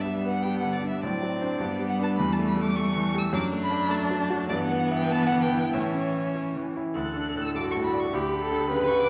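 A piano quartet opens together in a spirited, lively classical-period movement in D major at 103 BPM in 2/4, played with a flexible rubato feel. A clear, somewhat distant violin sings the melody high above a rich cello second line, while a focused, close viola and a bright, brilliant grand piano sitting up front fill out the accompaniment, the strings all colored by vibrato. The recital hall lends a wet, reverberant space, and the harmony moves through chords such as G, D/F# and Em7/G before a new section settles on D at 7.0 seconds in this passage cut from a longer piece.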